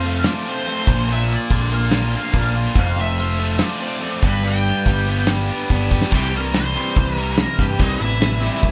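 A half-time groove at 143 BPM in straight 4/4 drives the first six seconds of this swaggering, confident classic rock excerpt, with a damped 70s drum kit up front, its fat snare, tight kick and dark crash and hi-hat sounding dry and polished. A picked electric bass sits prominently in the low end with a growly, amped tone, while two overdriven guitars play the riff: one biting and warm, the other brighter and bathed in spring reverb. Over them, an octave-fuzz lead guitar carries the melody with a dark, distorted edge shaped by wah. The harmony moves from F through Bb and G, and a drum fill at 5.7 seconds kicks the band onto C at 6.1 seconds, where the lead guitar launches into a solo. The whole band sounds as if it is playing live in one moderately ambient studio room, with a rounded top end.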